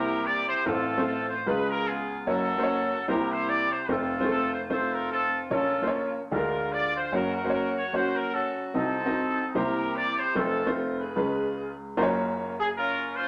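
This gospel fragment moves at 148 BPM in 4/4 with a light swing, carrying a fervent yet solemn mood as the harmony passes through chords such as C7, Db7 and Gb before settling on Gbmaj7 at 12.0 seconds. A tight, vintage horn section with light vibrato carries the jazz-style melody up front, while a woody, smooth upright piano with short sustain supplies the accompaniment across a broad range. Both parts play throughout, placed close in a wet studio reverb, and both carry a warm tone.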